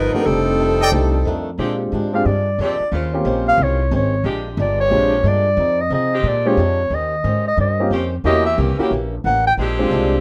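A swung 4/4 groove drives this energetic, brassy big band swing piece, carried by a woody, growly pizzicato upright bass, a boxy picked acoustic guitar with finger squeak, and an intimate grand piano with audible action noise and long sustain. A punchy, tight saxophone section states the melody briefly while a clear trumpet section stabs at 0.8 seconds, and from 1.6 seconds a distant, roomy saxophone section holds soft-attack chords. A breathy clarinet with light vibrato then takes an up-front solo melody, heard in a lightly reverberant, rough home-demo mix.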